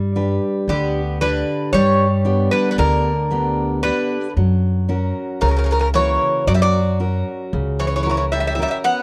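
Dark and melancholic, this brief Greek folk excerpt in 9/8 at 114 BPM places a mellow, metallic bouzouki melody up front from 0.7 seconds, alongside a softer, double-strung second bouzouki line, a full-bodied fingerpicked steel-string guitar with audible finger squeak, and a woody, thumpy pizzicato upright bass, moving from G to F# in a dry, close 1970s-style studio sound with a touch of small room reverb.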